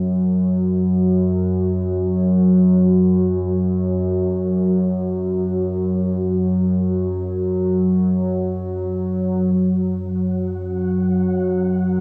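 An analog drone opens this dark ambient excerpt, its sawtooth and pulse-wave tones warbling and slowly evolving across a range of F#2 to F#3 in free time, mellow and up front with a chorus sheen under a vast, wet reverb that makes the mood cavernous and ominous. At 10.3 seconds a faint, flickering granular texture appears high in the background on F#5, its detuned triangle tone grainy and softened by its own reverb, lingering with the drone until the close at 12.0 seconds.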